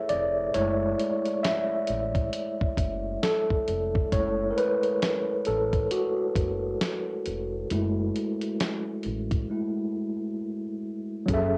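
A lazily swung 4/4 groove from a gritty, compressed sampler-style drum kit, with a thumpy kick, hi-hat and medium-tuned snare re-recorded in a large room, underpins this melancholic, hazy lo-fi hip hop excerpt cut from a longer piece. Over an F#m7 chord, a mellow, clean tine electric piano plays up front through its built-in speakers, taking a solo from the start and breaking at 9.5 seconds, while a dark, woody pizzicato upright bass sits low beneath it. The piano and drums carry a cassette-tape haze, and the whole home cassette recording sits in a moderate studio reverb.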